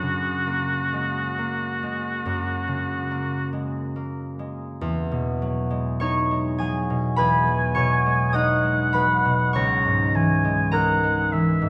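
A wet concert-hall reverb with a long 2.3-second tail surrounds this pastoral, dreamy classical duo for oboe and harp, an impressionist piece cut from a longer work. The oboe carries the melody up front, with a clear, vintage tone and light vibrato in a classical solo style, ranging from F#4 to A#5. Beside it, the concert harp plays a bright, ringing, fingerpicked acoustic accompaniment that spans a broad register, from deep C#2 up to D#6. Both instruments play throughout, moving in a loose, rubato 4/4 through added-note harmonies: F#add9 at the opening, Emaj9 at 4.8 seconds, then C#madd9 at 9.5 seconds. A new section begins with that shift at 4.8 seconds, giving the brief passage a gently unfolding, floating quality.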